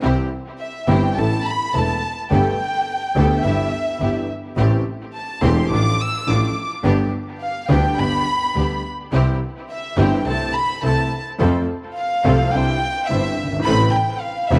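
A chamber violin section, bowed sul tasto with soft attack and vibrato, carries an intimate, up-front solo line from 0.6 s in this tense, melancholic rubato tango excerpt at 106 BPM in C major, set over a rich, focused bowed double bass, a warm vintage concert grand piano with deep bass, and clear, biting string-section stabs touched with tape echo, inside a light small-room reverb.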